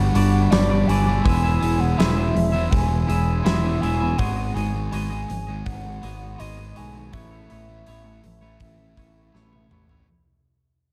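A growling, overdriven electric bass sits up front with a round tone, anchoring this dreamy, blissful rock excerpt in a shoegaze and dream pop vein. Around it, a thick fuzz guitar plays a distorted, picked riff touched with subtle chorus, while a twangy, scooped electric guitar picks a clean riff of its own, bathed in reverse reverb. Floating on top, a pure, soft sine lead carries the melody with vibrato, chorus and tape echo, its sustained notes lending a hazy glow. A huge arena drum kit enters at 0.2 seconds with a fat snare, punchy kick, hi-hat and toms, and closes with a fill from 9.3 seconds. The chords move from Gmaj7 through E and G#m7 to Aadd9 as the clip fades out across its whole length, all within a dark, warm, fairly dry production.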